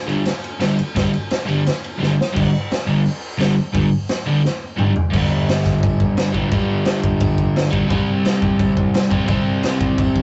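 Swaggering and raw, this garage rock excerpt for a small band charges along at 173 BPM in a straight 4/4, cut from a longer piece. A crunchy, overdriven electric guitar carries the riff from start to finish, picked and double-tracked up front, ranging from G2 to C4 over G5 power chords that shift to C5 at 7.9 seconds. Beneath it, a raw acoustic drum kit pumps in a small room with a punchy kick, a medium-tuned snare, toms, hi-hat, and dark crash and ride cymbals, its sound gritty and saturated with a rolled-off top. The drums break into fills at 2.0 and 4.4 seconds, marking the turns into new sections before the longest stretch runs to the end. The whole take has the rough feel of a rehearsal-room recording, with tube saturation, a dull top end and a short, wet booth ambience.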